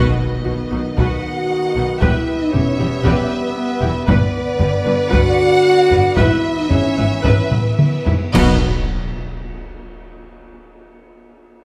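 A dark, distant French horn section and warm trombones open on sustained chords beneath bowed, lush string sections, with a timpani stroke from hard mallets and a huge, dark impact rumbling in the background of this majestic, heroic cinematic score in B major at 114 BPM, cut from a longer piece. A clear violin section carries a focused melody, supported by a rich second violin line and smooth, even violas, while a quiet, distant cello section and a background double bass section hold the low end. At 1.0 seconds a compressed, saturated taiko ensemble struck with hard sticks drives the uneven pulse, and from 4.1 seconds a cymbal swell, bright clash cymbals and concert bass drum join. The harmony moves from B through E minor and G to E/G#, and a drum fill leads into a B5 accent at 8.3 seconds, where the timpani returns and a second impact rings on. A wet recital hall reverb surrounds the ensemble, giving it a grand, spacious sound.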